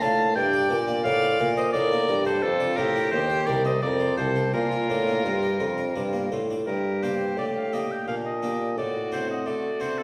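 A bright oboe with light vibrato carries the melody in this solemn, introspective baroque-style sonata movement in 3/4 at 86 BPM, joined by a rich, intense bowed violin on the second line, an airy, brilliant harpsichord accompaniment and a warm, soft-attack bassoon on the bass, heard from further back in a reverberant recital hall as the key turns from Bb major to G minor at 6.7 seconds in this fragment cut from a longer piece.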